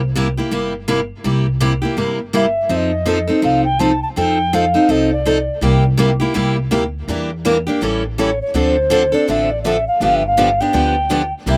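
A woody pizzicato upright bass opens this playful, swinging jazz manouche excerpt, quickly joined by an up-front picked steel-string guitar whose fresh strings carry audible finger squeak. From 2.4 seconds a reedy clay alto ocarina sings the melody with vibrato, a chiffy crisp attack and slapback echo, sounding slightly distant. A boxy parlour guitar slips into the background at 5.6 seconds, all captured dry and open-air over a C7, F7, Em7b5, A7 and Dm7 to G7 progression.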